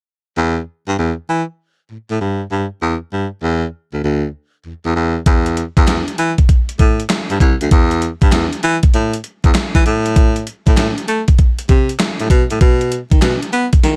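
A clear, close-miked baritone saxophone opens this slick, bouncy new jack swing excerpt at 0.4 seconds, carrying the bass role in a jazz style with a touch of vibrato, sitting up front between C2 and B3. The R&B groove moves at 98 BPM in 4/4 with a 65% swing on the sixteenths, set in E minor. At 5.3 seconds a gated 80s digital drum machine enters with handclaps, hi-hat, a thumpy kick and a snare drenched in gated reverb, its sampler-style electronic tone overdriven and re-recorded in a small room, pushed forward and louder than the sax. The saxophone keeps its solo character throughout, and both parts play through to the cut at 14.0 seconds. The overall production is dark and dry, with little room ambience beyond the drums' own treatment.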